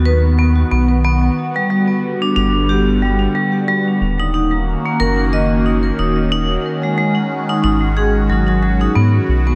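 IDM at 91 BPM with a light 16th-note swing, intricate and playful in this short excerpt, where a swirling, detuned analog pad holds phased and chorused chords over a round, deep analog bass while a bright, ringing hard-mallet vibraphone with slow motor vibrato spins delayed arpeggios from 0.1 seconds, moving through B, Gmaj7, D#m7 and G#7sus4 in a dreamy mix soaked in lush hall reverb.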